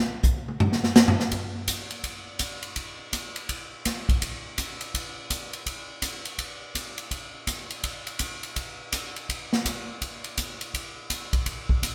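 A swinging big-band drum kit carries this short jazz excerpt, opening with a brief solo burst before settling into a brassy, swinging groove. Hi-hat, ride cymbal, snare, toms and a punchy kick sit up front with an airy, polished acoustic sound and a medium-tuned snare. A moderate club reverb surrounds the kit, which plays from 0.2 to 11.9 seconds.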